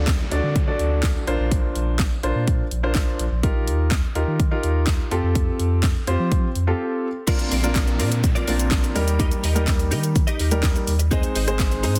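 Summery and euphoric, this dance-pop excerpt sets an intimate grand piano with audible action noise over a deep, round sine sub bass, both pumping under sidechain beneath a punchy, layered house drum kit of kick, cracking snare, handclaps, shaker, hi-hat and crash, while a very quiet downlifter sounds twice and, after a short break, a clean, compressed, direct-recorded electric guitar riff with ensemble chorus enters at 7.3 s, the whole mix carrying light reverb and a dense, heavily limited master.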